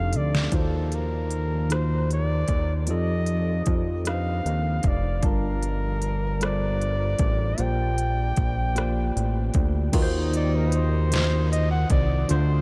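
A short drum fill opens this slow, sensual six-eight R&B excerpt, then an electronic kit with a soft kick, deep snare and smooth hats, overdriven and up front, settles beneath a fat, detuned sawtooth analog bass with a filter sweep and a worn, slightly out-of-tune tine electric piano moving through chords such as F13, Ebm6 and Gm7. A warm, close-miked flugelhorn carries the melody with vibrato and tape echo, punchy and pop-styled. At 9.9 seconds a mellow, distant horn section adds tight stabs in the background, also with tape echo, all in a room of light reverb.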